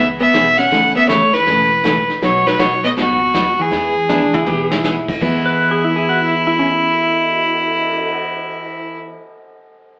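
A swung 4/4 groove at 160 BPM sets a cheerful, down-home western swing mood in E major. This excerpt is cut from a longer piece, and it has the boxy sound of an AM radio, as if the band were playing live together in one room. An earthy, bright fiddle carries the melody up front with light vibrato, while a dark, hollow-body archtop guitar plays a clean second line. Beneath them, a full-bodied dreadnought acoustic guitar picks along with audible finger squeak, a woody, thumpy upright bass sits in the background, and a vintage kit played with brushes keeps time with dark cymbals. As a drum fill begins at 4.1 seconds, a pedal steel guitar enters with a second line of volume swells and slide.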